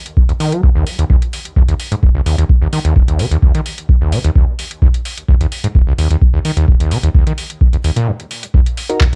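Up front, a squelchy, overdriven acid bass riff drives this gritty acid house cut, its resonant sawtooth tone distorted and pumping against the sidechain as it runs from 0.3 s to the end. Alongside it, a deep, dry electronic kick drum sits prominently in the mix, while a booming analog drum machine adds handclaps and metallic hi-hats at a lower level, both carrying a small room ambience. The feel is straight and driving in 4/4, with a brief break between 8.1 and 8.5 seconds. Just before the close, at 8.9 s, a hollow, nasal organ stab flickers in, dark and percussive with subtle chorus and a cassette tape coloring. The whole recording is dry and raw, a hardware-sounding slice cut from a longer piece.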